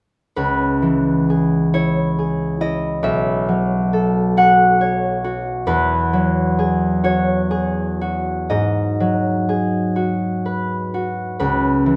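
A bright, ringing concert harp, fingerpicked and up front in light reverb, plays alone from 0.4 to 12.0 seconds in this wistful, gentle classical fragment cut from a longer piece, drifting in a flexible, rubato 6/8 through seventh and suspended chords that return to where they began.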